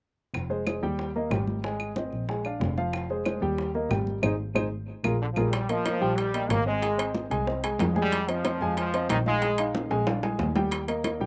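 Joyful and danceable, this salsa excerpt in Eb major moves at 185 BPM, with a warm, intimate baby grand piano (its action noise audible) and a rich, reedy bowed double bass with a gut-string tone up front, over background congas that sound bright and thin-skinned and round, low-tuned bongos carrying a slapback echo, while woody claves play until 5.4 seconds. At 5.2 seconds a brilliant, punchy trombone section takes the melody with vibrato, and ringing metal-shell timbales join at 5.5 seconds. A band accent and a drum fill mark the turn into the second section, and another fill follows the trombones, all in a dry outdoor sound.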